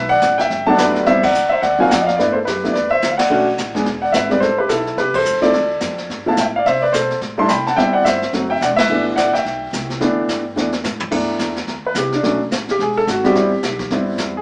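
A warm, up-front baby grand piano carries the melody through this sophisticated, playful jazz piano trio excerpt, swinging briskly in 4/4 over a woody, thumpy pizzicato upright bass on gut strings. A brushed drum kit with dark cymbals and a boomy kick enters at 0.2 seconds. The band hits shared accents at several points, a drum fill at 10.6 seconds leads into a short piano solo from 11.1 seconds, and harmonies move through rich extended chords like G69, Am9 and a rootless D9. The trio sits back in a wet studio reverb with a small-speaker sound, and the piece is cut from a longer performance.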